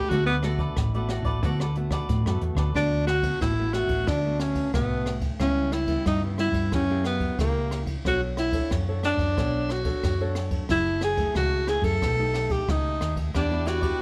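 Samba and choro with a festive, sunny mood, led up front by a breathy, intimate alto saxophone with vibrato carrying the melody throughout, over a small-sounding fingerpicked nylon-string guitar, a round hollow-body electric bass and a jazz brush kit with dark cymbals and a boomy kick, while a crisp picked cavaquinho plays only until 2.7 seconds and returns at 13.3 seconds, the mix set in moderate studio reverb.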